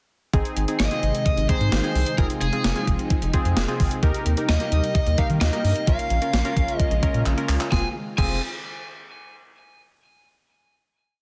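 A driving, nocturnal synth-pop piece in F minor at 130 BPM opens at 0.3 seconds with a gated 80s drum machine's thumpy kick and overdriven gated-reverb snare up front, a rubbery, hollow square-wave sequenced bass, and round, detuned analog keys playing syncopated chorused triads, joined by phaser-tinged string-machine violas as a background pad and an overdriven lead guitar through a small cranked amp with delay picking motif-based phrases over an Ab, Fm7, Eb6, Bbm7 progression, before a drum fill at 7.3 seconds leads into a final Fm chord in a dense, heavily limited mix.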